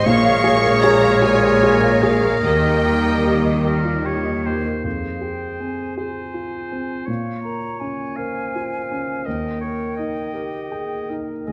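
Cinematic, emotional film score for orchestra, bittersweet and full of longing, moving in a slow, rubato 6/8 at around 48-56 BPM in dotted quarters, taken from a longer piece. A clear, smoothly bowed violin section carries the melody high in its range over the opening seconds, shadowed by a very quiet, distant second violin section with a rich, focused tone. Beneath it, a rich viola section, a mellow French horn section holding sustained chords in the background, and a bass line from a clear double bass section and a rich cello section fill out the opening, all falling away by about 4.6 s. Throughout the 11.5 seconds, an up-front grand piano with a smooth, vintage character and short sustain supplies accompaniment, while a pure, expressive concert flute, a distant solo oboe and a dark, soft-attacked clarinet weave second lines. The harmony drifts through Bbm7, Eb, Fm and Bbm before returning to Eb, and a wet scoring-stage reverb gives the ensemble a roomy, cinematic depth.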